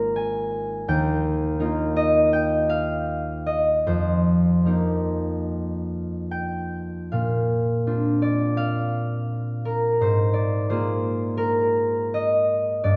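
A lush concert hall reverb with a 2.3-second tail surrounds this recording, and its soft, rounded top end stops short of any bright shimmer. Within that space sits a solo concert harp, placed up front, its acoustic, thumb-plucked strings ringing with a warm glow across a span from Ab1 to Ab5. This serene classical fragment is cut from a longer work, and it moves in a gentle, rubato 4/4 that gives the phrasing a relaxed, breathing quality. The harmony drifts peacefully through open, colorful chords: Ab69, then Ebadd9 at 0.9 seconds, F9sus4, and Bbadd9, before settling back on Ab69 at 10.0 seconds. Tuned to A4 = 438 Hz, the harp carries the whole peaceful 13-second passage alone.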